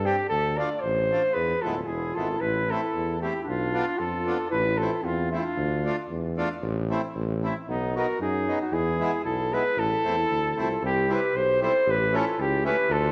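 Set in a moderate recital-hall reverb, this bouncy, festive alpine folk dance-band excerpt in 2/4 features a warm, roomy flugelhorn melody with light vibrato up front, a clear tuba bass line and a reedy accordion accompaniment, while a close-miked clarinet enters at 1.3 seconds with a second line in the background.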